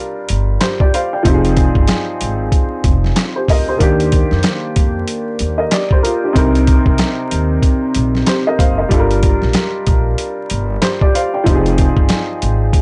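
Soulful and warm, this boom-bap hip-hop cut from a longer piece moves at 94 BPM in 4/4 with a swung sixteenth-note feel. A dark upright piano opens alone at 0.0 seconds, its mellow, worn tone slightly detuned, with audible action noise and long sustain, sitting up front through a cassette-tape coloring and filtering that trims both ends of its sound. At 0.3 seconds a pizzicato upright bass with gut strings adds a woody, thumpy low end, alongside a sampler-style drum kit that is compressed and pitched down, with a thumpy kick, a medium-tuned snare, hi-hat and handclaps placed up front. The chords move from Gm7 through Fm7, Ebmaj7 and Cm7 before returning to Gm7 and Fm7. The mix is dry and gritty, with a hardware edge, vinyl crackle and a dulled top end that keeps the whole passage close and intimate.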